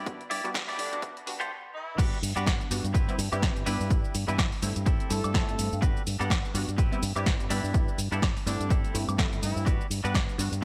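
A bright, 1980s-style digital sheen and light reverb frame this sunny, feel-good slice of filtered disco house, cut from a longer piece and riding a swung sixteenth-note groove. An up-front, tape-warm electronic kick anchors a punchy analog drum machine of snare, hi-hat, crash cymbal, cabasa and woodblock, with the hats, cymbals and percussion pumping against the kick. A fingered electric bass with an envelope filter sounds direct and amped, while a clean, twangy, compressed electric guitar picks a riff and a funky polysynth comp blends detuned sawtooth, pulse and wave-folded tones with a fast filter pluck, chorus and phaser. Guitar, bass, synth and a smooth, loosely played jazz-style horn section, doubled in octaves with light vibrato, all pass through a low-pass filter and breathe with sidechain pumping. The horns carry the melody from 0.8 s, and after a short build-up and a break near 1.5 s the drop arrives at 2.0 s, cycling through mellow seventh chords over a steady bass note.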